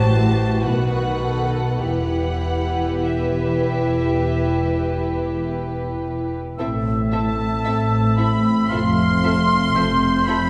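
Classical orchestral music in a slow, romantic vein, this elegiac and yearning passage is cut from a longer piece and moves at 48-58 BPM in 4/4 with a flexible, rubato feel, beginning in E minor before turning to A minor at 6.6 s. A violin section carries the melody high in its range, rich and intimate with light vibrato and a soft, sul tasto touch, while a second violin section shapes a supporting line beneath it. Dark, floating violas supply accompaniment, and woody cellos join a warm double bass section to anchor the low end, all bowed gently over the fingerboard. At 6.6 s a solo oboe enters with a second line alongside a mellow French horn section holding sustained chords, and a hollow, pure-toned flute adds its own line from 7.1 s. The orchestra is heard from further back in a concert hall, with a generous wash of reverb surrounding the strings and winds.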